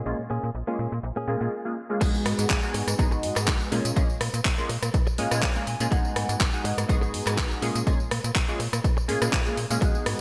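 Groovy and funky, this short cut of filtered disco house moves at 123 BPM with a light swing, opening on a filter sweep as a snappy, metallic FM slap bass, an up-front detuned sawtooth polysynth comp with chorus and phaser, and a bright, clean picked electric guitar riff sitting in the background all pump under sidechain and a low-pass filter over A#m7 and G#m7. At 2.0 s the drop lands with a punchy, tape-warm electronic kick and a layered house kit of handclaps, hi-hat, ride, crash, rim click and tambourine, its hats and cymbals pumping and wrapped in gated reverb. A guitar fill arrives at 4.9 s, all set in a lush hall ambience with a glossy 1980s-style digital sheen.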